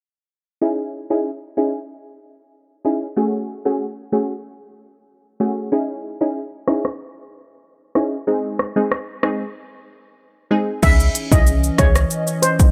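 This bouncy, sultry dancehall excerpt moves at 94 BPM in a straight 4/4, with a deep house drum kit arriving at 6.7 seconds: punchy kick, smooth hats, rim click, shaker and crash cymbal, layered and up front with a small-room character. Before that, a crisp, detuned wavetable chord stab carries the harmony from 0.6 seconds in C# harmonic minor, pumping with sidechain as a filter sweep runs beneath, moving through C#madd9, F#madd9 and G# before a break at 9.6 seconds. At 10.8 seconds the second section opens back on C#madd9, bringing in a shimmering steel pan melody struck with soft rubber sticks and trailed by tape echo. Alongside it, a hollow, flute-like pad sustains airy chords with chorus and its own sidechain pumping, while a short, tight 808-style bass with a sine core and noise layer sits in the background. The mix is dry and low-pass filtered, keeping the sound close and intimate.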